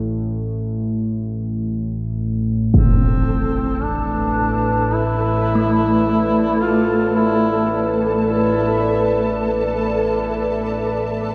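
A slow, straight 4/4 pulse at 54 BPM underlies this unsettling, desolate dark ambient drone, cut from a longer piece and set in a vast, echoing cathedral-like space. An up-front analog drone, detuned and warbling with chorus, holds low from the opening, its sawtooth and pulse-wave tones evolving slowly. At 2.7 seconds a huge impact lands as a sweeping resonant pad enters on a rootless C6/A chord, bright and full-bodied with a filter swell and chorus, while a solo duduk sings a folk-style melody with vibrato and scooped notes, distant yet up front and carried by tape echo. A flickering, grainy granular texture sits low in the mix, and from 5.6 seconds a gamelan-type bronze metallophone rings out arpeggios in the background, its paired tuning producing shimmering beats through tape echo. The piece fades out from 8.7 seconds.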